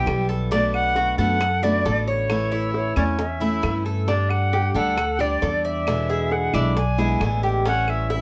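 Sunny and warm, this 8.2-second excerpt of Cuban son and guajira at 134 BPM sets an airy, expressive jazz flute with vibrato and a chiffy attack, heard at a distance, over a bright, metallic tres playing arpeggios on its doubled strings, a picked steel-string acoustic guitar, a growly, thumpy upright bass up front, and tight, high-tuned bongos and woody claves in the background, moving from Em through Bm7, A, Gsus2 and E7 to A7 in a moderate studio room.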